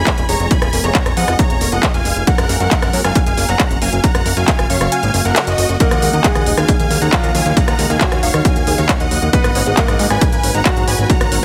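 A huge, bright supersaw lead carries the melody across this euphoric yet bittersweet uplifting trance excerpt in Eb minor at 136 BPM, pumping against the sidechain with delay trailing its notes, while a catchy, dark unison lead with cassette-tape colour and a moving notch sits behind it over a fat, nasal analog bass. A round, chorused analog pluck spins arpeggios in the background, and a punchy, tape-warm electronic kick joins a techno kit of smooth hats, handclaps and rim clicks, with the kick dropping out from 4.9 to 5.8 seconds. At 5.8 seconds a brilliant concert grand piano enters with 12-bit sampler grit and audible action noise as the chords move through Fdim, Gb, Ebm7 and Abm7 under light digital ambience.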